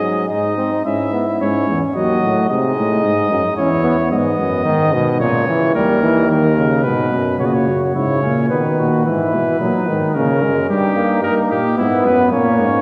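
A clear, present cornet carries the melody up front in this stately, joyful classical canzona for brass ensemble, its light vibrato sitting in the middle of the treble range. Set in C# minor in a straight 3/4 at 110 BPM, the imitative writing pairs it with a smooth-topped, mellow trumpet on a second line that stays in the background, drops out at 4.1 seconds and returns at 7.4 seconds as the music turns toward brighter major harmonies. Beneath them, a punchy trombone supplies the accompaniment, while a soft-attacked euphonium, also placed up front, anchors the bass. Each player uses a light classical vibrato. The ensemble is heard from further back in a concert hall, with a wet reverb that lets the chords ring and blend in this short excerpt from a longer work.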